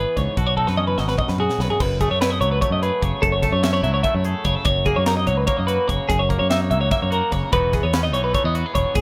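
A bright, up-front twelve-string electric guitar spins arpeggios over a twangy, picked electric guitar and a warm fingered bass, while a crisp fusion kit with a high-tuned snare and punchy kick enters at 0.2 seconds and plays a fill leading into the change from Badd9 to F#m11, after which the chords pass through F#6 to Emaj9 in this playful, wistful math rock and midwest emo passage in 7/8 at 294 BPM, heard in a rough home demo mix with light studio reverb.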